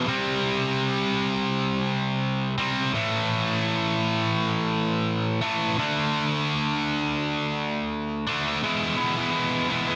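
A sludgy, overdriven electric guitar plays alone and up front, picked and double-tracked, through a restless, bittersweet rock fragment at 84 BPM in a straight 4/4, tuned to A4 = 444 Hz, moving through C5, A5 and D5 power chords before shifting to E at 8.6 seconds, all set in a moderate studio reverb and a dense, heavily limited modern master.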